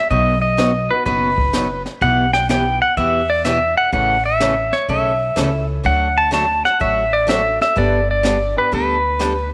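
Playful and cheerful, this brief western swing excerpt in D major at 125 BPM with a swung 4/4 feel puts a bright, twangy pedal steel guitar up front on the melody over a boxy picked acoustic archtop guitar, a woody, growly pizzicato upright bass, a jazz brush drum kit with a high-tuned snare and boomy kick, and a brilliant upright piano in the background from 0.9 seconds, all set in a moderate echo-chamber reverb as the chords move from B through Em/B, A and D to Gadd9.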